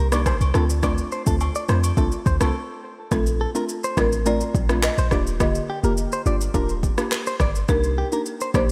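A straight 4/4 afrobeats groove at 105 BPM rides on a deep house drum kit of handclaps, deep kick, rim click and shaker, overdriven and up front, beneath a boomy sine 808-style bass, while a twangy, direct-recorded clean electric guitar riff with analog delay and a hollow, detuned square pluck with chorus fill out this romantic, breezy Bb major excerpt cut from a longer piece. Agogo bells and woodblock sit in the background until 2.5 s, a brief break follows, and at 3.1 s a woody, rustic folk marimba with medium mallets and analog delay takes up the melody over chords moving from Bbmaj7 to Ebmaj7 and then Cm7. The whole is bathed in light reverb.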